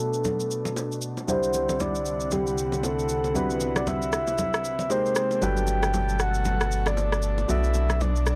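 Relaxed and warm, this short amapiano passage opens with a breathy, flute-like synth lead carrying the melody over a clear grand piano with audible action noise and bowed chamber strings holding sustained chords, all three softened by a low-pass filter under a filter sweep that spans the whole clip. An electronic shaker and rim click and ringing, saturated bongos and congas drive the swung groove, while a deep, round sub bass arrives up front at 5.4 s as the chords move from Bm7 through Cmaj9#11 and Abmaj9 to Gmaj9. The sound is dry and gritty with a cassette-tape character and a small room ambience.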